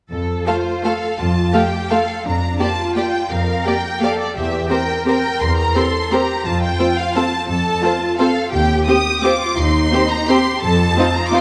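A lush, up-front violin section carries the melody of this festive, elegant orchestral ballroom waltz, its expressive vibrato soaring through the upper register in F major at 171 BPM in 3/4, with uneven beats and a rubato feel. A second violin section sits in the background with its own close, bowed line, while the viola section fills in the accompaniment with a focused, smooth-topped tone. Underneath, the cello section and the up-front double bass section share the bass role, entering at 0.1 s just before the upper strings join at 0.5 s. The harmony moves from F through Gm7/F, C7/E and Cm/Eb before landing on F7, a passage cut from a longer piece. A moderate scoring-stage reverb gives the string ensemble a polished, spacious studio sheen.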